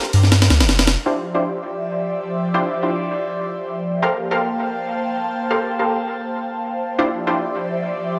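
A light reverb and digital ambience frame this short cut from a longer drum and bass and jungle piece in D minor, which moves in free time with a frenetic yet atmospheric mood. It opens with a burst of sampler-style breakbeat drums, a compressed, pitched-up kit with a gritty, high-tuned snare and ride cymbal, sitting up front alongside a deep, round dub sub bass that enters at 0.1 seconds and drops out with the drums by 1.0 second. From the start until 7.4 seconds an orchestra-hit-like synth stab cuts through, bold, punchy and bright, built from layered, detuned sawtooth unison with a noise layer, ring modulation and a filter sweep, coloured by its own reverb, cassette tape and dub echo. At 1.1 seconds an airy, breathy pad enters for the second section, its detuned sawtooth and triangle tones blooming slowly through chorus and phaser and sustaining to the close at 8.2 seconds. The harmony shifts between Gm11 and Dm11, lending the spacious second half a hazy, suspended colour after the dense opening hit.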